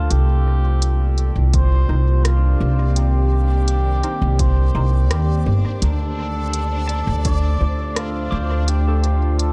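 This excerpt of spacious, deep ambient dub opens with a soft, veiled cup-muted trumpet carrying the melody through dub echo. Beneath it sits a dark, mellow pad of sustained chords with chorus and reverb, while a clean pedal steel guitar plays arpeggios in the background, also trailed by dub echo. Up front, a woody, growly upright bass anchors the low end with a tube-saturated thump, and from 0.1 seconds an organic electronic kit adds smooth hi-hats and rim clicks. A reversed, dreamy swelling texture rises in at 1.0 seconds, followed by a punchy layered kick from 1.5 to 7.4 seconds and a very quiet filtered chord stab with phaser. The harmony rests on Cm7 before moving to Dm7 at 5.8 seconds.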